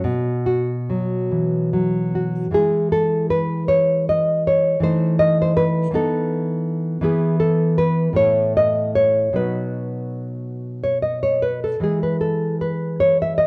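A slow, rubato 6/8 lilt of roughly 47-57 BPM in dotted quarters carries this tender, nostalgic romantic piece for solo classical guitar in E major, cut from a longer work. The nylon-string guitar sits up front with a dark, full-bodied, thumb-plucked tone, ranging from A2 to E5 as it moves from a brief opening into a longer second section at 2.5 s, passing through a B7b9 colour before settling on E at 11.8 s. A moderate stone-room reverb lends the sound a resonant, natural space.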